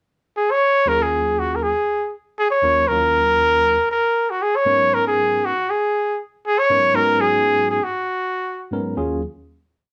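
A warm trumpet sits up front from 0.4 s, playing a motif-based solo melody in period phrases with light vibrato, soft attacks, scooped notes and a smooth top. A clean tine electric piano, heard through its built-in speakers, enters at 0.9 s with pushed rootless chords, moving from Ebm11 to Abm11 before landing back on Ebm11 at 9.0 s. This slick, driving jazz piece in Eb minor swings at 118 BPM, with a live band in one room and a moderate studio reverb.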